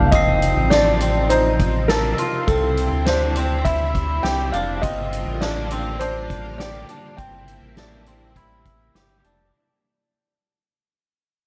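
A straight 4/4 pulse at 102 BPM from a soft-mallet drum kit, with a boomy kick and medium-tuned snare up front, carries this melancholic, hazy dream pop fragment, cut from a longer piece, as it fades out over chords of F7, C6, Gm7 and C7/G. A round, dark analog bass sits beneath lush, vintage string machine chords with ensemble chorus, while a clean, twangy electric guitar picks arpeggios through subtle chorus and analog delay. A muted, intimate felt upright piano carries the melody, a bright, sparkling glockenspiel rings briefly in the background from 0.2 to 1.2 s, and the whole mix is steeped in echo from a moderate chamber reverb.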